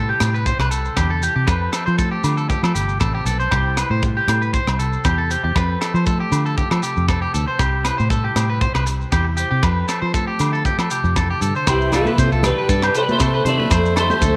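A twangy, slightly broken-up electric guitar picks arpeggios through spring reverb and tape echo in this sunny highlife excerpt at 118 BPM in C major, over a round, foam-muted fingered bass up front, a tight funk drum kit of hi-hat, kick and rim click, a clean picked rhythm guitar, and grainy maracas and ringing agogo bells far in the background, until at 11.7 seconds a clean lead guitar with ensemble chorus takes the melody, a raspy, forceful tenor saxophone adds a second line, and moments later distant high-tuned congas join.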